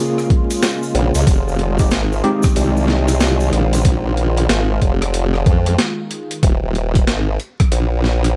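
Dry and dusted with vinyl crackle, this gritty, playful glitch hop excerpt opens on a detuned sawtooth pad in the background and overdriven tine electric piano stabs with fast tremolo and dub echo, both pumping to the sidechain, before a pitched-down boom bap sampler kit with a high-tuned snare, a grainy, distant tube shaker and an up-front, thumpy electronic kick arrive, joined at 0.9 s by a saturated formant-sweep wobble bass that carries the swung groove to the end.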